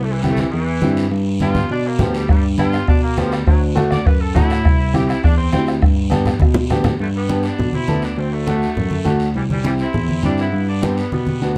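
Joyful and danceable, this cumbia fragment, cut from a longer piece, moves in a straight four-four feel. A bright, jazz-style saxophone section carries the melody with vibrato and a soft, vintage attack, taking a featured solo through the opening 7.0 seconds. Beneath it, an overdriven tine electric piano plays the bass line, barky and gritty through a combo amp with analog chorus and sitting up front, while a clear, woody upright piano supplies accompaniment. Low-tuned congas ring close and dry under hard hands, a raspy guiro sounds distant as if in a large room, and a bombo struck with a soft beater joins up front at 2.3 seconds, with drum fills closing each section. The harmony cycles through C, G and D under a lightly reverberant, dark production.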